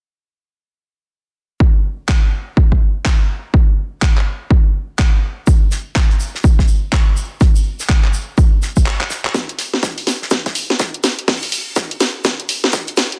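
A swung sixteenth-note 4/4 groove drives this swaggering, aggressive bass house drum passage: a punchy, overdriven electronic kick sits up front from 1.6 s, a garage kit brings handclaps, bright hats and a cracking snare, and a dry, airy 70s acoustic kit adds hi-hat, shaker and a fat snare from 5.5 s, before a brief break and drum fill give way to a build-up at 9.3 s, all within a dense, heavily limited master with small-room ambience.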